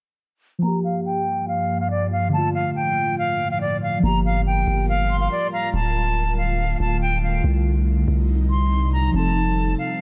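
Dark and hard-hitting, this half-time hip hop piece opens on a filter sweep as a breathy, close-miked flute carries the melody over muted, felt-like synth keys with chorus and phaser and an ethereal pad, until a deep, sine-toned 808-style bass arrives up front at 4.0 seconds and a second flute with vibrato and tape echo enters at 5.1 seconds, shortly before the lead flute stops at 5.7 seconds.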